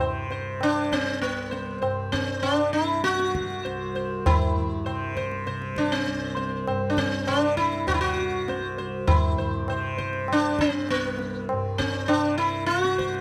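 A plectrum-plucked sitar, buzzing and up front with a halo of sympathetic strings, opens this serene, devotional Hindustani classical passage in C raga yaman over a softly plucked, shimmering tanpura drone, joined at 0.3 seconds by low-tuned tabla with a short ring in a live room, all moving at an unhurried 99 BPM in straight 4/4 under light reverb as a fragment cut from a longer performance.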